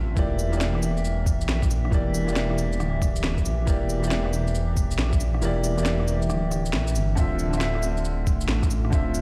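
This melancholic, ghostly future garage excerpt opens with a bright, woody upright piano and a warbling, nostalgic tape-like pad, with chorus and built-in reverb, both pumping against the sidechain over a deep, rumbling detuned saw bass, as the harmony moves from Em7b5 to Dm9 at 7.2 seconds. A muffled, thumpy, overdriven kick anchors the swung groove alongside a woody snare, shaker, cabasa and rim click, though the kick drops out between 5.4 and 7.2 seconds. The piano trails dub echo, and the whole sound sits in a stone room as if played on a big sound system in a bare space.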